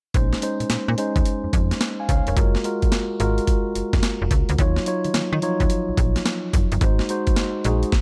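R&B in a new jack swing vein, this confident, slick excerpt moves at 108 BPM in Bb minor with a 16th-note swing, moving through Bbm11, Gbmaj9, Ebm9 and Ab7. A mellow, clean tine electric piano sits up front with the chords, while a snappy FM bass with a metallic, digital attack fills the low end. A compressed, gritty sampler-style boom bap kit with a thumpy kick, medium-tuned snare, hi-hat and a tape-warm character drives the groove in a dry, close sound.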